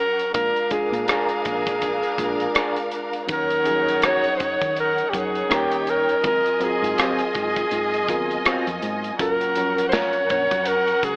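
Warm and smooth, this short fragment of lush 1970s-style soul moves at 81 BPM with a gentle swing, as a breathy, close-miked alto saxophone carries an intimate, whispered melody with vibrato and scooped notes over distant bowed strings that add portamento and expressive depth. A reedy, clean electric piano supplies the accompaniment above a round, foam-muted fingered bass and an up-front drum kit with a tight kick, rim clicks and a rolled-off top, while a slightly broken-up electric guitar picks a riff in the background from 1.1 to 10.2 seconds. The chords drift from A#7 through D#m7 and G#13 to F#maj7, and light reverb and an AM radio sound color the whole piece.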